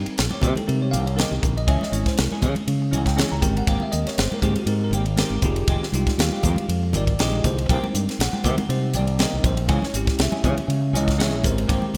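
A bell-like tine electric piano and an up-front fingered electric bass open this bright, soaring electric jazz fusion excerpt with a light sixteenth-note swing, joined almost at once by a crisp, polished drum kit with a high-tuned snare and tight kick, clean semi-hollow guitar stabs coloured by analog chorus, and ringing congas set in the background, over a progression of Cm7, Dbm, Abmaj9 and Fm9 in a lush hall reverb with a crisp 1980s-style digital production.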